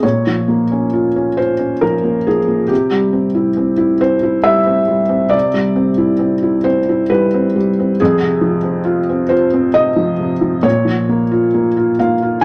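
A felt-muted upright piano plays alone from 0.0 to 12.4 s in this melancholic, reflective excerpt of neoclassical minimalist piano, moving through Bbm, C, Fm and back to Bbm at a rubato 68 BPM in 3/4, tuned to A4 = 441 Hz and spanning F2 to Ab5, its soft, mellow, boxy tone sitting up front and intimate with audible action noise in a moderate studio reverb.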